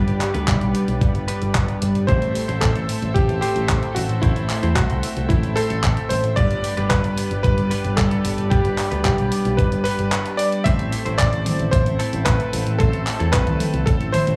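This italo disco excerpt opens on a lush, detuned pad holding sustained chords with chorus. Alongside it sit bright, twangy clean guitar stabs, recorded direct and tucked in the background behind a low-pass filter, and a punchy picked bass shaped by an envelope filter. A tape-warm 12-bit drum machine supplies handclaps, hi-hat and toms re-recorded in a large room, while a gritty, thumpy electronic kick sits prominently beneath. At 2.1 seconds a vintage electric grand piano takes the melody, its clangy, chorused tone short in sustain and trailed by tape echo. The harmony moves between G and A minor, and a band accent at 10.1 seconds leads into a new section at 10.7 seconds, all within a dry, small-room hardware sound that keeps the danceable pulse feeling nostalgic.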